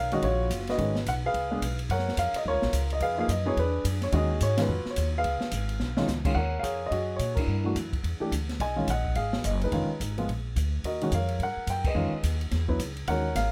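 Close, detailed and nearly dry, this swinging, smoky jazz piano trio fragment puts a warm, short-sustained grand piano up front on the melody, over a woody, thumpy pizzicato upright bass with steel strings and an open acoustic drum kit with a boomy kick, medium-tuned snare, ride, hi-hat and crash, as the band hits accents at 4.5, 7.3 and 11.8 seconds.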